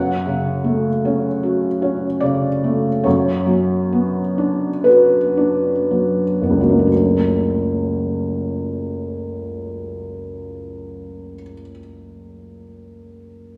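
A felt-muted upright piano opens this melancholic, wistful fragment of a romantic nocturne, its soft, intimate tone sitting up front with the quiet clatter of its action clearly audible. The piano plays alone throughout, ranging from deep bass notes up into the middle of the treble, with a loose, rubato feel in a slow four. Over the first 6.9 seconds the pace gradually slows, as the harmony shifts from a minor chord to another resting over the same bass note. A new section begins at 6.9 seconds, returning to the opening chord and carrying the reflective mood onward. The piano's natural, mellow sound is wrapped in the lingering reverb of a recital hall, giving the close playing a spacious, church-like glow.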